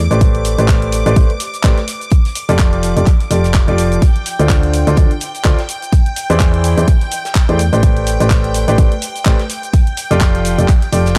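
A shimmering, chorused string-machine violin pad with 12-bit sampler grit opens at 0.0 s alongside a round, mellow FM bass, both pumping to the sidechain. Within moments a woody upright piano riff with tape echo joins up front, and by 0.2 s a punchy, tape-warm electronic kick drives this bittersweet, soulful piano house cut at 126 BPM with a 16th-note swing. Layered house handclaps, hi-hat and shaker sit above the kick, while a very quiet acoustic kit of hi-hat and mid-tuned snare sits beneath. Over the Am11, F69, Dm7 and E7alt changes, the kick drops out at 10.8 s in this dry, gritty, transformer-saturated small-room recording cut from a longer piece.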